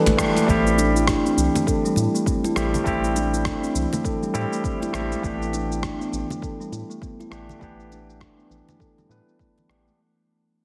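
A ringing steel tongue drum plays arpeggios in this hypnotic, meditative organic downtempo piece in A minor, its pure, bright notes struck with firm rubber mallets and softened by a low-pass filter and digital delay. At 101 BPM in 4/4 with a lazy 16th-note swing, a barky, clean tine electric piano sits up front through a combo amp, pumping against the sidechain under its own filter and delay. Beneath it, a round, dark analog bass holds the low end, while a deep, overdriven electronic kick and a gritty, dusty sampler-style kit of cabasa, hi-hat and rim click add a filtered groove, joined by bright, dry congas tucked in the background. A tense, string-like drone is barely audible for just the first half second, the band hits an accent at 0.2 seconds, and the harmony moves from Am7 to G6/A at 5.2 seconds. Heavily compressed into a radio-like sound and bathed in a lush hall reverb, the short passage cut from a longer piece fades out from 0.5 seconds onward.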